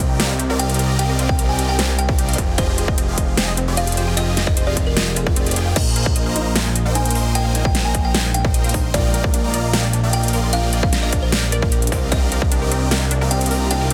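Riding a half-time 4/4 pulse at 151 BPM, this bright, playful future bass drop pumps a huge, phaser-swept supersaw chord riff and a fat detuned sawtooth bass alongside a distorted up-front kick (which drops out from 5.4 to 5.8 seconds) and a dubstep kit with a massive snare and metallic hats, while a lush unison pluck arpeggiates in the background, a buzzing, woody kalimba melody with digital delay enters at 0.6 seconds, and a very quiet, shimmering granular pad arrives at 7.5 seconds over Cm11, Fm7, Bb7sus4 and Ebmaj9/Bb chords in a dense, heavily limited, nearly dry mix.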